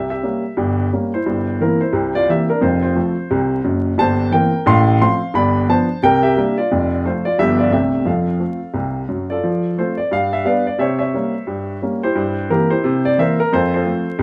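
A solo upright piano opens on a tense C7b9 chord, its woody, natural tone sitting up front over a bed of vinyl crackle. This is playful, swinging stride jazz in 4/4 with a bouncy eighth-note lilt, the piano ranging from deep bass notes up into its bright upper register. The harmony moves through dominant sevenths and turnarounds, settling on F before passing through G7, C9 and a C69 colour. At 9.4 s the same strain begins again, returning to the C7b9 and resolving home to F just before the 14.2 s cut. A moderate club-like reverb gives the piano a cosy sense of a small room in this short excerpt from a longer piece.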